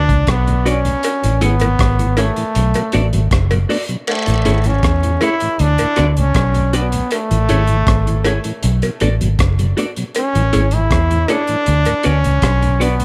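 This roots reggae excerpt rides a straight 4/4 groove at 79 BPM in A major, anchored by a crunchy breakbeat drum kit whose gritty, saturated sound, dark cymbals, tight kick and rim clicks sit under a rolled-off top with analog delay. A round, foam-muted fingered bass sits up front and punchy, giving the uplifting, warm mood its low weight. Over this, a brilliant trombone carries the melody from A3 to E4 with vibrato and a forceful, present tone, colored by tape echo. In the background, a clean semi-hollow electric guitar adds compressed, picked accompaniment through lush chorus and tape echo, while a mellow tonewheel organ with key click turns slowly in its rotary speaker with analog delay. Cowbell and a jawbone-type rattle, blended with maracas and group handclaps, enter at 1.0 seconds and drop out at 12.0 seconds, as the chords cycle through D6, Amaj7 and Bm7 in a small, lightly reverberant room.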